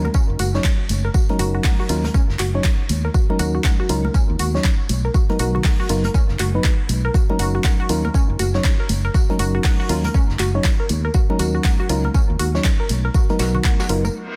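Deep house with a sunny, warm mood and a swung 4/4 groove, built on a deep, tape-warm electronic kick and an up-front fingered electric bass, with a distant brush kit of snare, hi-hat and tambourine, damped high-tuned congas in the background, and a layered electronic kit of handclaps and dark hats. A soft, warbling FM electric piano plays chorused stabs over F#6, D#m7 and Bmaj7 chords, while a detuned sawtooth-and-square analog pluck with a filter sweep runs arpeggios through cassette tape and tape echo, both carrying sidechain pumping. The dense, heavily limited mix sits in a small room, and after a break at 14.1 seconds a reverse cymbal closes this excerpt cut from a longer piece.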